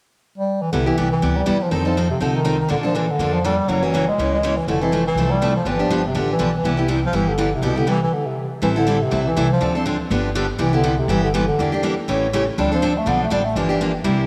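Playful and charming, this fast acoustic string swing excerpt at 243 BPM moves from C major into A minor at 8.6 s, led by a clear bass clarinet up front with light vibrato and scooped notes in a jazz solo style. A picked steel-string acoustic guitar, warm and also up front, plays the accompaniment over a woody, thumpy pizzicato upright bass with gut strings, all bathed in a wet echo chamber reverb. A brief stop from 8.1 to 8.6 s sets off the second section, whose chords begin on Am7.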